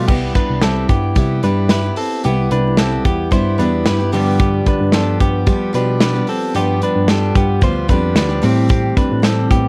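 Jangly indie pop with a breezy mood, this section of a longer piece moves in a straight 4/4 through Cmaj7, G7 and, from 8.4 seconds, Am7. A picked steel-string acoustic guitar with an auditorium character supplies the accompaniment, while a clean electric guitar, recorded direct, plays twangy, compressed arpeggios touched with a subtle chorus. The bass comes from a worn, slightly out-of-tune tine electric piano heard through its built-in speakers. A modern studio drum kit sits up front from 0.1 seconds, with a punchy kick, a medium-tuned snare, hi-hat and crash with bright cymbals. Light reverb and vinyl crackle give the production a dark, warm finish.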